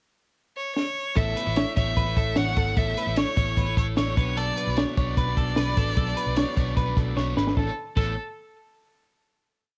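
This complete piece carries the homespun sound of a cassette home recording, set in a moderate studio reverb. It is breezy, nostalgic jangly indie pop in a straight 4/4. A clear, bowed violin enters during the pickup bar at 0.6 seconds, and the compact cocktail drum kit plays a fill before the verse arrives at 1.2 seconds. The kit sounds dark and small-roomed, with a high-tuned snare, tight kick, hi-hat and crash setting a brisk indie backbeat, while a foam-muted, round, punchy picked electric bass pushes steady eighth notes beneath. A twangy, ringing twelve-string electric guitar picks a compressed figure as a crunchy overdriven guitar strums barre chord shapes through the change from Aadd9 to Bm. The violin carries a smooth, motif-based melody with vibrato, and after a second drum fill at 7.2 seconds the band settles on a final Aadd9 chord.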